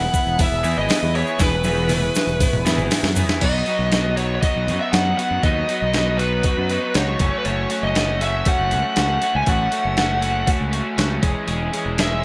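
A dark, distorted bluesy lead guitar with slapback echo carries the melody over a clean twelve-string electric riff bathed in spring reverb, a growling overdriven fingered bass and a brassy, chorused analog pad that stops at 3.4 seconds along with a grainy egg shaker, while a bright, raw garage guitar joins the riff at 0.6 seconds and a crisp, thumpy 8-bit drum machine up front plays a fill from 1.4 seconds in this wistful yet upbeat indie rock excerpt.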